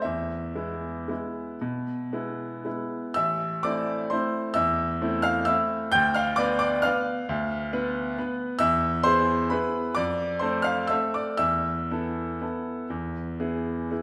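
A clear, open baby grand piano plays a solo waltz in 3/4, sitting up front with long sustain in a wet recital-hall reverb, ranging from A1 up to G6. This wistful, elegant classical excerpt in A minor moves with rubato between 107 and 144 BPM, tuned to A4 = 443 Hz. It opens on an E chord and settles into A minor at 3.2 seconds for a longer passage that moves through Bdim/D and F to an Esus4 that resolves to E at 12.9 seconds.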